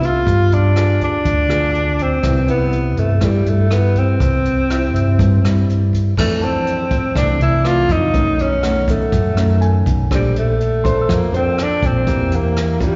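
A breathy, subtoned tenor saxophone carries the melody up front with vibrato and scooped notes in this relaxed, breezy bossa nova fragment at 122 BPM, moving from C major to F major at 6.2 seconds over fingerpicked nylon-string guitar and a warm grand piano in the background, both touched with slapback echo, plus a round hollow-body electric bass and a jazz brush kit with dark cymbals and a boomy kick, all heard as a live gig through the venue's PA with recital hall reverb and a muffled, rolled-off top.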